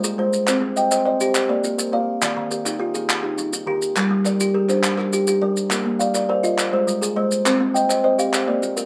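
An up-front kalimba with a mellow, airy, ringing fingertip-plucked tone spins interlocking arpeggios beside a second, band-limited kalimba with a short, vintage thumbnail attack in this hypnotic, warm southern African traditional mbira-style cycle in 12/8, cut from a longer piece, as grainy close maracas and crisp live-room group handclaps, the claps entering at 0.5 seconds, fill out a moderate small-room reverb.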